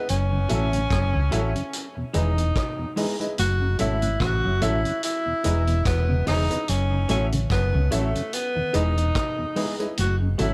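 A relaxed roots reggae groove rolls along in 4/4 with a lilting swing on the sixteenths, anchored by a dark, round hollow-body bass sitting up front and a vintage drum kit of kick, hi-hat and rim click with a punchy kick and a rolled-off top. The mood is laid-back and warm, as a distant, roomy tenor saxophone carries the melody with light vibrato and tape echo, standing forward over the band. Behind it, a worn, woody upright piano, slightly detuned, adds short stabs, while a mellow tonewheel organ with chorus vibrato and a slow rotary speaker fills in quietly. Two guitars round out the accompaniment: one picked and compressed at the edge of break-up with its own tape echo, the other clean and fingered, spinning very quiet arpeggios. The harmony sways between F#m7 and Emaj7 throughout this short cut from a longer piece, with a light reverb giving the whole band a gentle sense of space.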